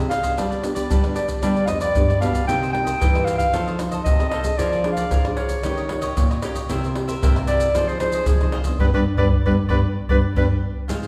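From the first moment, the percussion of maracas, pandeiro, tamborim and tight surdo, played with soft hands and sitting up front, sounds together with a crisp picked cavaquinho and two nylon-string guitars in this lively, nostalgic samba and choro cut from a longer piece at 114 BPM in a straight 4/4. One nylon-string guitar thumb-plucks the accompaniment in a classical manner, while the other carries the bass with a woody tone from old strings. A smooth-topped clarinet enters at 0.1 s with the solo melody in a classical style, moving over a progression that runs from G through Cm7, F7, Bb7/F, Eb7, C7 and Fm7 before returning to G. Near the end the band hits an accent from 8.8 s while the drums add a short fill, and the clarinet finishes at 10.4 s. The whole ensemble sits in the generous reverb of a church or concert hall, giving the sound a resonant, recital-hall glow.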